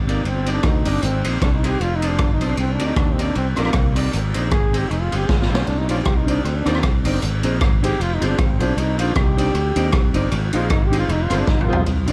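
Ska at 155 BPM in C minor, this driving, energetic excerpt swings its eighths lightly in 4/4 and cycles through Cmadd9, Ab and Fm. A bright trombone carries a solo across the whole stretch, its tone marked by light vibrato and scooped notes in a present, pop-style delivery touched with analog delay. Underneath, a growly fretless electric bass sits up front, alongside a raw garage drum kit that sounds saturated and gritty, with a boomy kick, a high-tuned snare and a rolled-off top; drum fills land at 5.3 and 11.5 seconds. A clean, picked electric guitar stays in the background, dark-toned and washed in spring reverb and analog delay. At 5.9 seconds a dark, woody upright piano joins with boxy, mellow stabs, also set back in the mix. The whole recording carries a layer of vinyl crackle and light studio reverb, and it is cut from a longer piece.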